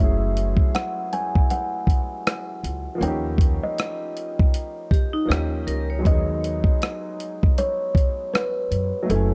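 Lo-fi hip hop at 79 BPM with a swung 4/4 feel, this nostalgic, melancholic excerpt moves through F#m7, D#7 and G#m7/D# as a filtered, ringing kalimba carries the melody over a slightly detuned upright piano and a woody pizzicato upright bass. A gritty, sampler-style drum kit with a thumpy kick, hi-hat and rim click sits up front from 0.4 seconds, carrying vintage 12-bit crunch. Between 4.9 and 6.3 seconds, a metallic vibraphone struck with hard mallets adds a brief second line with slow motor vibrato and analog delay, all within a dark, warm production.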